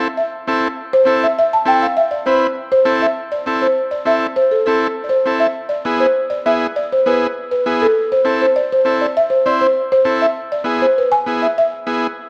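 A straight 4/4 Latin groove races along at 200 BPM in A minor, taking on a harmonic minor colour from 3.2 s in this fiery, driving passage cut from a longer piece. A buzzing, woody marimba played with soft mallets carries the melody up front between A4 and A5, its round, airy tone set in plate reverb. Beneath it a vintage, clean combo organ accompanies through spring and plate reverb in a moderate studio room, moving from Am to E7 at 5.6 s and back to Am before landing on E.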